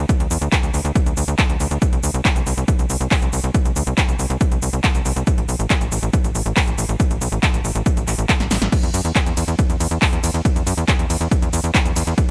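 A punchy, overdriven electronic kick drum sits up front in this euphoric yet bittersweet uplifting trance excerpt, layered with a big-room dance kit of crisp hats, punchy snare, handclaps, shaker, ride and crash, both re-recorded in a large room yet kept fairly dry. Alongside them a tight, nasal sequencer bass built from sawtooth and square waves drives with a fast-attack filter pluck, decaying notes, an evolving tone and sidechain pumping. A brief drum fill arrives at 8.4 seconds before the groove carries on to the cut at 12.3 seconds.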